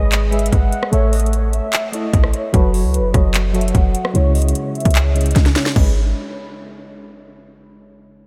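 A deep, boomy 808-style bass sits up front in this short, hard-hitting and eerie trap excerpt at 149 BPM in a half-time feel, in G# phrygian, moving through G#m, A, F#m and C#m beneath an up-front electronic drum kit with a hard-clipped kick, sharp snare, metallic hats, handclaps, rim clicks and a crash, plus a drum fill at 5.4 seconds. Floating above, a soft-attack studio violin section plays a pure, sul tasto melody through a low-pass filter and analog delay, while round, dark electric-piano-like synth keys add chorused, tremolo-tinged accompaniment. A filter sweep runs through the opening 5.8 seconds, and the mix carries light reverb and a faint mains hum.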